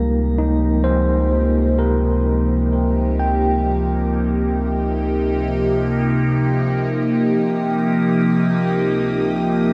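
Peaceful and serene, this ambient fragment in 3/4 sets a bright, morphing wavetable pad with phaser and a filter sweep over a deep, round analog bass sustaining a low note, while a gritty, overdriven tine electric piano plays arpeggios through fast tremolo, delay and shimmer reverb, fading out and stopping at 7.2 seconds, and a lush bowed violin section enters quietly in the background at 6.9 seconds, the whole mix sitting in a huge, wet reverb space.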